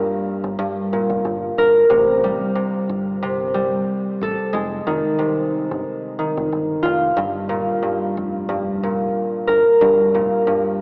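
A tough, dark hip hop fragment at 91 BPM in G minor with a light 16th-note swing, where a mellow, ringing fingerpicked concert harp with a cassette tape tint sits up front over Gm, Am7, Fm9 and Gm7 chords, joined at 0.4 s by a round, punchy dub fingered electric bass low in the mix, all bathed in a dreamy, cathedral-sized reverb and an AM radio sound.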